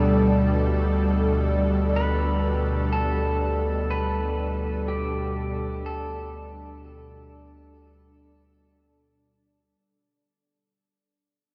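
A morphing, detuned wavetable pad sits up front with chorus and its own reverb, holding a Gadd9/D chord across this peaceful, luminous ambient excerpt at 61 BPM in 4/4, tuned to A4 = 438 Hz. Beneath it a deep, round sine sub bass rests on D2, while a soft pluck's arpeggios and an overtone-sweeping, ring-modulated drone stay barely audible. A bright, twangy pedal steel guitar, played with fingerpicks and volume swells, carries the melody through diffuse delay until 8.8 s, all fading out inside a vast, echoing reverb with a cassette-tape tint.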